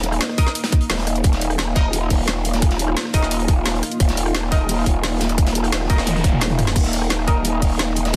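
A tight, layered electronic kick sits up front from 0.4 seconds, driving a straight 4/4 pulse in this tense, aggressive piece of dark technical drum and bass, cut from a longer track. An overdriven drum and bass kit with a woody snare, bright hats, rim clicks, toms and crash cymbal carries the groove, while a dark, rolled-off breakbeat kit with a medium-tuned snare sits in the background behind it. Underneath, a growling, saturated bass wobbles through a formant filter on a low Eb, with chorus and overdrive pushing it forward in the mix. A deep, moody analog pad holds detuned sustained chords with a sub octave and slow attack, pumping with sidechain compression, while a nasal, band-passed chord stab with ring modulation, phaser and digital delay cuts through above. A very quiet noise sweep rises from 5.7 seconds, and a drum fill arrives at 6.1 seconds, all set in light reverb under a dense, heavily limited modern master.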